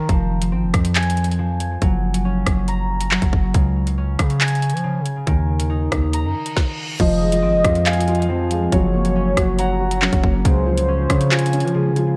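A ringing, fingerpicked concert harp plays up-front arpeggios with analog delay over a heavy, distorted 808-style bass and a drill kit of hard-clipped kick, woody snare, metallic hats, claps, rim clicks and crash with 12-bit sampler grit in this dark, ominous half-time drill excerpt at 139 BPM in F phrygian, where a reverse cymbal at 6.3 seconds leads into a velvety, chorused synth lead and a mellow, boxy grand piano entering at 7.0 seconds, all within an echo-heavy mix of light reverb and digital ambience over an Fm, Gb, Db progression.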